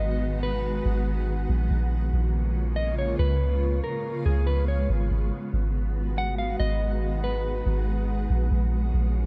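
Set at 141 BPM in 4/4 with a half-time feel, this short hip hop fragment in G# dorian moves slowly and sounds ethereal and melancholic. A soft, round 808-style bass sits up front for the full 9.3 seconds, its deep sine tone hitting with a fast attack and then decaying. Around it, a granular cloud pad holds sustained chords with a blurred, detuned, slowly evolving quality, softened by built-in reverb and a long release. A clean, fingered electric guitar carries the melody, its dark tone echoed by digital delay until it stops at 8.3 seconds. Further back, an airy, breathy wind-like noise texture drifts in its own reverb, while the chords move from G#m7 through A#m7 and C#7 before returning to G#m7 and closing on A#m7. The production is dark and warm, giving the whole fragment a hazy digital ambience.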